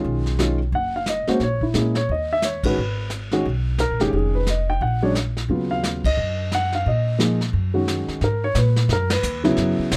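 A dark, mellow baby grand piano carries the melody up front, its short sustain and audible action noise giving it an intimate, natural presence as it ranges from Db3 to G5. This is a cool, moody jazz piano trio excerpt swinging at 176 BPM in 4/4, cut from a longer piece, with chords moving through shaded harmonies like Bbm7b5, Ebm9 and Abm9. A woody pizzicato upright bass with steel strings sits close in the mix, while a vintage brush kit of brushed snare, hi-hat, kick, ride and snare adds a smooth, rolled-off texture with dark cymbals and a punchy kick. The whole band hits accents at 2.6, 6.0 and 9.1 seconds, and a new section begins at 8.2 seconds. Close, detailed microphones and little reverb keep the sound dry and immediate.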